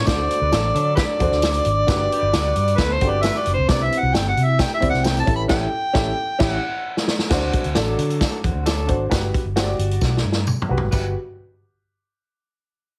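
An overdriven harmonica leads this uplifting, uptempo 1960s-style soul excerpt in G major at 133 BPM, its gritty, amplified tone up front with scooped notes and tongue slaps before it drops out at 7.0 seconds. Beneath it sit a dark, foam-muted fingered electric bass, a woody, slightly detuned upright piano with audible action noise, and a punchy vintage drum kit with a rolled-off top, while a smooth saxophone section hums in the background and a very quiet, bright vibraphone with slow motor vibrato rings through the opening until 5.4 seconds. A close, jingly tambourine adds sparkle, the band hits an accent with a piano fill and drum fill leading into a new section at 7.3 seconds, and the whole mix has a heavily compressed radio sound in a moderate club reverb.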